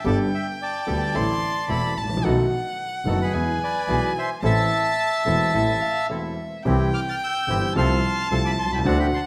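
A wet, large studio reverb surrounds this passionate, nostalgic tango fragment in A minor, moving at 110 BPM with a rubato feel. An up-front, reedy, bright bandoneon carries the melody over a close, expressive bowed violin second line with vibrato and portamento, while a smooth, vintage grand piano accompanies and a biting, earthy bowed double bass holds the low end. A second bandoneon adds boxy stabs with slapback echo in the background, and after a break at 6.1 s the harmony turns to C and F/C from 6.7 s.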